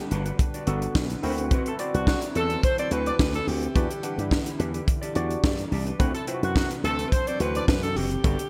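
Slick and danceable, this early-eighties boogie funk excerpt at 107 BPM sets a breathy, close-miked alto saxophone melody with digital delay over a punchy, growly slap bass with an envelope filter, a tight, up-front funk drum kit with gated reverb, a barky, lightly overdriven tine electric piano, a shimmering chorused pulse-width pad and a dark, clean electric guitar riff in the background, while a clear horn section adds a second line from 1.7 to 7.6 seconds over Gmaj7, D13 and Em7 chords in a bright 1980s-style digital production with small room ambience.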